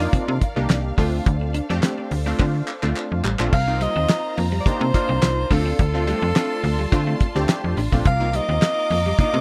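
A breathy alto saxophone with vibrato takes the melody up front at 3.5 seconds, riding over a slick, danceable early-eighties boogie funk groove at 106 BPM in C dorian, where a snappy FM bass with a metallic attack and a damped seventies drum kit with a fat snare, tight kick, handclaps and a drum fill from 2.4 seconds drive the beat. A punchy sawtooth polysynth comp with chorus and a filter sweep moves between Cm11 and Dm7, while a clean semi-hollow electric guitar riff drenched in lush chorus and bowed symphonic strings sit in the background. The dry, close sound carries little reverb, and the passage is cut from a longer piece.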